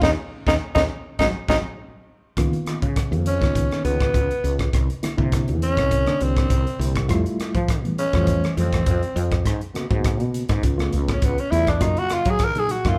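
A slick, funky stretch of electric jazz fusion, cut from a longer piece, opens at 0.0 seconds on a band accent from the whole group, with the bright reed electric piano adding a short fill at 1.5 seconds. From 2.4 seconds the growling tenor saxophone takes a solo up front, its breathy, raspy tone carrying scooped notes and a soft attack in a jazz style. Beneath it, the electric piano sounds reedy and clean through its built-in speakers, shimmering with a fast tremolo as the harmony moves from Db13 through C9, Fmaj9 and Abm11 to Db7alt and Gbmaj7. The woody fretless electric bass is dark, round and hollow, with a growly edge, while the crisp, acoustic drum kit sits up front with a punchy kick, high-tuned snare, rim clicks and hi-hat in a small, pumping room. Light reverb frames a straight groove in four, the band sounding as if it plays live together in one room.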